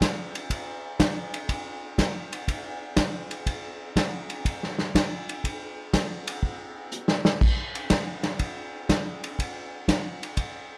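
Set in a moderate club reverb, an up-front vintage acoustic drum kit with dark cymbals, a smooth, rolled-off top, a medium-tuned snare and a tight kick plays soulful, late-night swing jazz at 122 BPM in 4/4, moving across crash, ride, hi-hat, snare and kick, with a fill at 6.9 seconds leading into a new section at 7.4 seconds in this short cut from a longer piece.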